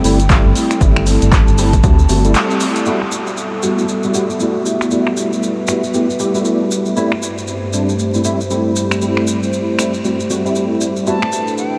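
Soulful and relaxed, this deep house excerpt moves at 117 BPM with a swung 16th feel in G major, as a dark, detuned analog pad holds sustained chords and a worn, slightly out-of-tune tine electric piano, lightly overdriven with tape echo, plays up-front stabs, both pumping against the sidechain. A round, deep analog bass and a punchy electronic kick drop out after the opening seconds, leaving a tape-warm drum machine of finger snaps, handclaps and filtered hi-hat alongside grainy maracas, with a filter sweep on the drums from 2.9 seconds following a short break and band accent at 2.4 seconds. At 11.1 seconds a pure silver concert flute with a soft attack and vibrato enters briefly over a Gmaj13 chord, all within a dreamy mix soaked in huge ambient reverb and vinyl crackle.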